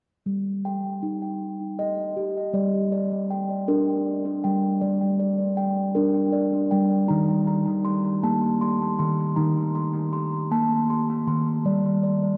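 A lone steel tongue drum opens at 0.3 seconds, playing round, ringing arpeggios with soft rubber mallets, up front and mellow, over an Eb/G chord that settles onto G minor at 2.5 seconds. This meditative, hypnotic world piece moves in a slow 6/8 at 53 BPM, with the drum's tone colored by cassette tape and an analog delay, and a moderate, lush hall reverb adding a 2.7-second tail. Cut from a longer piece and heard on a home cassette recording, the passage continues until 12.4 seconds.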